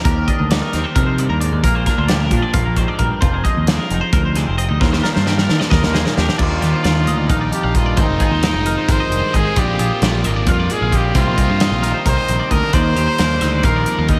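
This excerpt has a big arena sound, with a lush hall reverb around a small room ambience, in a bright, intricate blend of math rock and midwest emo at 265 BPM in 7/8 and Eb major. From the opening, a clean, compressed twelve-string electric guitar sits in the background with slapback echo, while a twangy picked guitar spins high arpeggios through analog chorus and digital delay. A growling, overdriven bass and an up-front studio drum kit with a punchy kick and medium-tuned snare drive the odd-metre pulse through chords like Ebmaj7, Bb and Fm7, and a drum fill from 4.8 to 6.4 seconds leads into the second section. A bright trumpet with light vibrato takes the pop-style solo melody at 5.7 seconds, and at 6.4 seconds a biting, double-tracked overdriven guitar riff joins low in the mix with phaser and slapback echo. The harmony richens to Ebmaj9, Ab69, Bb9 and Cm7 before returning to Ebmaj9.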